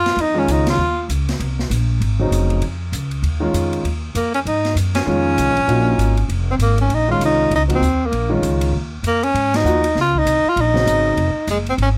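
A breathy tenor saxophone and a woody, pizzicato upright bass open this excerpt of intense, searching modal jazz in Eb dorian, swinging in 4/4 at 196 BPM over an Eb9sus4 chord. The saxophone, up front and soloing in a jazz style with vibrato and scooped notes, breaks off at 1.1 seconds and returns at 4.2 seconds to carry the melody through to the end. Beneath it, the growly steel-string bass sits up front and runs throughout. The clear concert grand piano accompanies with a natural sound and deep low end, while an acoustic jazz kit in a small room adds dark cymbals across hi-hat and ride, a medium-tuned snare and a boomy kick, sitting further back in the mix. The whole band punches out several accents together, and light reverb gives the performance a sense of space.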